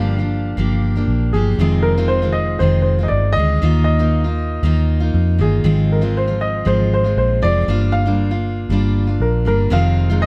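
This excerpt from a longer acoustic pop piece moves at a steady 118 BPM in straight 4/4, with a carefree, sunny mood. A picked steel-string acoustic guitar with a full-bodied jumbo tone carries the accompaniment up front, while a vintage fingered electric bass, foam-muted and round, anchors the low end and sits loudest of the three parts. Above them, a dark, mellow upright piano with a woody character plays the melody in a compact upper range, touched by tape echo. All three parts play throughout the roughly 10.3 seconds, moving through Gm7, Fm7, Ebsus2 and Ab6 before returning to Gm7 and Fm7. The sound is intimate and dry, captured with close, detailed microphones and very little room reverb.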